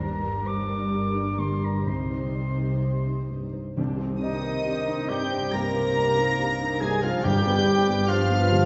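Rubato 4/4 at 61-71 BPM in C minor, this sorrowful, moving cinematic fragment opens with a dark, sul tasto violin section carrying the melody over a warm solo oboe line, a lush viola section, a felt-muted upright piano, and an intimate cello section and a dark double bass section on the bass, before timpani enter at 3.8 s and a mellow clarinet, a small flute group, a floating second violin section and a roomy French horn section holding sustained chords join at 4.2 s, the whole heard from further back in a wet scoring-stage reverb that rolls off above 8.0 kHz.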